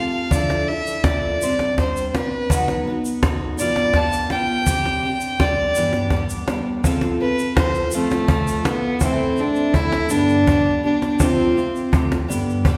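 Peaceful and nostalgic, this acoustic folk excerpt moves at an unhurried 55 BPM in a lilting 6/8, its tuning sitting slightly below standard pitch. A rich, earthy fiddle, bowed by a single player with light vibrato, sits up front and carries a solo line across the whole passage before stopping at 12.0 seconds. Beneath it, a picked twelve-string acoustic guitar supplies the accompaniment with a shimmering, octave-doubled jumbo body and the warm, woody tone of old strings. A woody cajon with faint snares adds up-front percussion with a small-room sound, while a grainy, bright tube shaker sits close but low in the mix. The harmony drifts through colored chords such as Dmadd9, Csus2 and G7/B before turning toward Am, G and Fadd9 at 9.0 seconds, and the whole ensemble sounds as if it were set in a church or concert hall, carried by a lingering recital-hall reverb.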